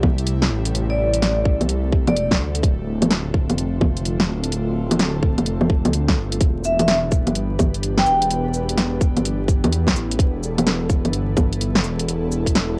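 A metallic, ringing vibraphone with medium-hard mallets and motor vibrato drifts through an analog delay in two short phrases at 0.9 and 6.7 seconds, over a rainy, melancholic future garage groove at 127 BPM in E phrygian, where a tight, layered electronic kick and a garage kit of cracking snare, warm hi-hats, bongos and cabasa sit up front with cassette coloring, a deep, rumbling detuned saw bass pumps to the sidechain, and an airy, breathy pad with chorus and tape grain sustains Am7, Dm7 and Em7 chords beneath light digital ambience and vinyl crackle in this lo-fi home-cassette sound.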